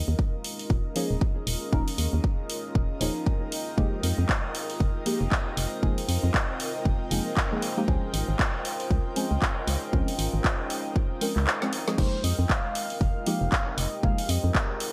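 Bright, 1980s-style digital production with light reverb frames this moody, late-night deep house excerpt in F minor at 117 BPM with a swung 16th feel, where a punchy, tape-warm electronic kick and an up-front drum kit of woody snare, dark hats, handclaps and crash with gated reverb sit over a hollow, percussive organ-like FM bass, while a dark, detuned ambient pad with 12-bit sampler grit and an airy, breathy phased pad pump under the chords as soft, wave-folded stabs with cassette tape color and digital delay punctuate them, and after a drum fill at 11.6 seconds a breathy, flute-like synth lead with vibrato enters at 12.0 seconds.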